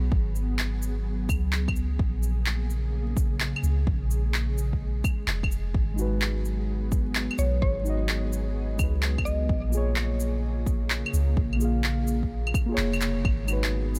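A soft, round 808-style bass sits up front from the first second, its deep, dark sine tone pulsing with sidechain pumping in this melancholic, ghostly future garage excerpt at 128 BPM in 4/4, swung on the sixteenths and set in G# dorian. Above it, an ethereal, airy pad of detuned, unison voices holds sustained chords with a slow attack and long release, bathed in ensemble chorus and its own reverb while it breathes with sidechain pumping. A deep, layered electronic kick and a produced mix of shaker, handclaps and claves carry the groove in a small room ambience, and the harmony moves between G#m7 and A#m7. Muted, felt-like synth keys join at 5.9 seconds with an intimate, full-bodied tone touched by chorus and tape echo, and a woody, mallet-like FM pluck adds a brief melody from 7.4 to 9.6 seconds through cassette tape coloring and echo. Near the end the kick drops out under a band accent at 12.8 seconds, and vinyl crackle runs through the fairly dry mix.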